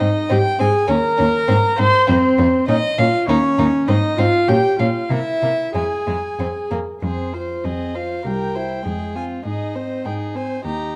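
In a rubato 2/4 at 100 BPM, this urgent, dramatic fragment cut from a quick classical-period string quartet movement in F minor, tuned to A4 = 438 Hz, has all four gut-string, period-style players bowing from 0.0 to 11.0 seconds: a reedy first violin carries the melody up front, a nasal second violin with an airy bow sits close on the second line, a smooth-topped viola gives accompaniment, and a rich cello with light vibrato holds the bass, moving through Bbm, C7 and Fm in a dark production with moderate recital hall reverb.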